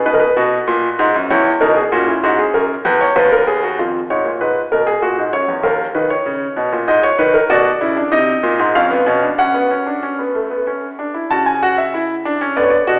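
In a straight 3/4 at 96 BPM, this lively, elegant baroque-style three-part fugue for solo grand piano, cut from a longer piece, has a smooth, vintage piano tone sitting up front in the mix across a span from D#2 to A5, and it settles into F# minor from 7.5 seconds, all wrapped in a wet recital-hall reverb heard from further back in the room through a telephone-like filter.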